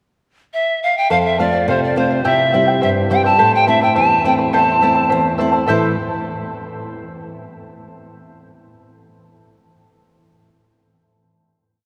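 Earthy and festive, this short Andean folk piece in 2/4 opens with a breathy bamboo pan flute playing alone through a pickup bar from 0.5 seconds, its soft attack carrying a touch of chiff and a reedy vibrato. At 1.1 seconds the charango and nylon-string guitar enter together as the harmony moves through F, C and A minor. The pan flute stays up front with a motif-based melody built in paired phrases. The charango adds a shimmering layer from its double strings, some doubled at the octave, mixing fingerpicking with rhythmic strumming on open chord shapes. The warm classical guitar sits close alongside the flute, fingerpicking an oompah of bass notes and chord figures. A cathedral-like reverb from a church or concert hall surrounds the ensemble and carries the final chord, which begins at 5.7 seconds.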